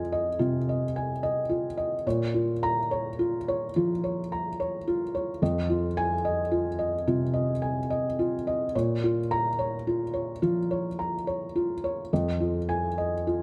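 A felt-muted upright piano opens alone at 0.0 seconds, its soft, mellow tone and audible action noise placing the listener close beside the instrument. This is neoclassical minimalist piano in F minor at 72 BPM in 4/4, played with a rubato feel that gives the melancholic, intimate mood room to breathe. The harmony moves between Fm7 and Bbm, settling back on Fm7 near 12.1 seconds. The part spans from F2 up to Bb5, and the tuning sits slightly below standard at A4 = 439 Hz. Close, detailed microphones keep the piano up front and natural, while a moderate recital hall reverb of 1.5 seconds adds space around it through to the cut at 13.4 seconds in this fragment of a longer piece.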